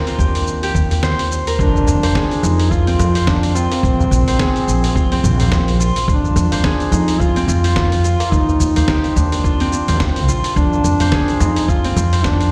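Mystical and hypnotic, this organic downtempo excerpt moves at 107 BPM in F dorian with a swung sixteenth feel, opening on a fingerpicked, ringing Celtic harp playing arpeggios through delay, quickly joined by a gritty, tape-warm sampler-style kit with fat snare, hi-hat and shaker, a low-tuned, very quiet tabla, a thumpy electronic kick, and a woody, growly pizzicato upright bass that pumps under sidechain. At 1.6 seconds a mellow, folk-style duduk enters as the solo voice, its vibrato and scooped notes carried on delay, while an electronic impact sits in the background until 3.8 seconds. Chords cycle through Fm6, Bbsus2 and Ebmaj7, all heard as if played on a big sound system in a bare room with a large studio reverb.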